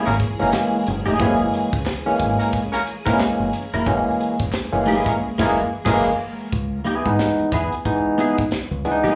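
A swung sixteenth-note funk groove at 90 BPM in 4/4 drives this hypnotic fragment of a live club set, heard through the venue's PA with a short room reverb, as a tight drum kit with a high-tuned snare and a deep, round fingered bass anchor an F#9 that moves to C#m7 at 6.5 seconds. Up front, a barky, lightly overdriven tine electric piano plays stabs while a bright, twangy clean guitar accompanies with chorus, plate reverb and slapback echo, and a smooth horn section in octaves carries a second line with tape echo until 6.0 seconds. Shimmering sawtooth string-machine violins sustain chords beneath, a very quiet, crisp group handclap adds texture, and the band hits an accent from 5.2 seconds.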